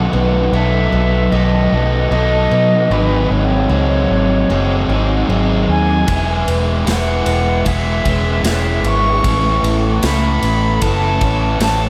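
Shoegaze and dream pop rock with a dreamy, blissful mood, this short cut opens with a distant, pure flute melody carrying vibrato and delay over shimmering, octave-doubled twelve-string acoustic arpeggios washed in lush chorus, a raw, overdriven garage guitar riff up front, a barely audible twangy electric guitar riff and a round, foam-muted electric bass. At 6.1 s a big rock drum kit arrives with a punchy kick, medium-tuned snare and ride cymbal, as the harmony drifts from suspended seventh chords to E6 and Aadd9. The whole mix is soaked in a wet church reverb.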